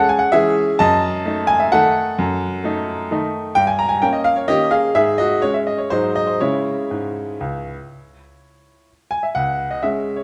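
A woody, vintage-sounding upright piano plays alone and up front, spanning C#2 to A#5 in a nostalgic, elegant classical waltz in C# minor, tuned to A4 = 439 Hz. The 3/4 pulse moves with rubato between 116 and 136 BPM, with harmony passing from C# minor through diminished and dominant-seventh colours before settling back on C# minor and closing on a bare C#5 at 9.4 seconds. The smooth, clear tone sits in a wet recital hall reverb, in this roughly ten-second fragment cut from a longer piece.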